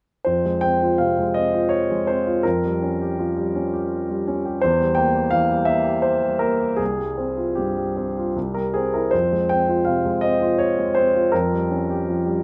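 A flexible, rubato triple metre carries this passionate, stormy fragment of a romantic character piece for solo grand piano, whose polished, present tone sits up front in light reverb as it spans the low bass to the upper treble from 0.2 to 12.4 seconds, moving from dark minor and half-diminished harmonies through a diminished chord to a suspended chord that resolves before returning to the minor.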